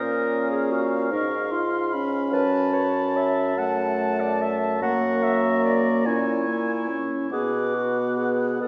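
A mellow, vintage-toned bassoon sits up front, carrying the bass beneath a tender, slow romantic movement for wind quintet in 6/8 at a rubato 48 BPM, tuned to A4 = 438 Hz and moving through Bbm, F#m, F#7 and Bm. Above it, the concert flute sings a pure, straight-toned, tongued melody, and the close-miked oboe adds a second line with light vibrato. The clarinet's soft attack and the clear French horn fill out the accompaniment, and all five play throughout this 8.7-second fragment, heard from further back on a scoring stage with a 1.5-second reverb and a top end rolled off above 7.9 kHz for a warm, rounded sound.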